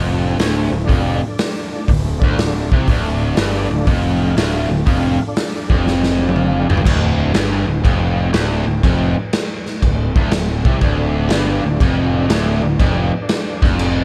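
A double-tracked, overdriven electric guitar opens this gritty, smoky excerpt of blues rock with a southern rock edge, playing a low riff in D minor over a fuzz-drenched picked electric bass that sounds punchy and amped. Moments later, a raw garage drum kit enters and sits up front, its punchy kick, medium-tuned snare, hi-hat, toms and crash cymbal carrying a dark, rolled-off top in a bright stone room. The groove runs at 121 BPM in 4/4 with a swing feel on the eighth notes, and the whole passage rests on a single D minor chord. Behind it all, a clean tonewheel organ holds sustained chords through a slow rotary speaker and chorus vibrato, with audible key click, adding a clear shimmer in the background. A drum fill arrives at 5.9 seconds, joined by a short organ fill at 6.1 seconds, and the organ then drops out before returning at 10.8 seconds. Light reverb keeps the mix close and raw, with the guitar and drums pressed forward.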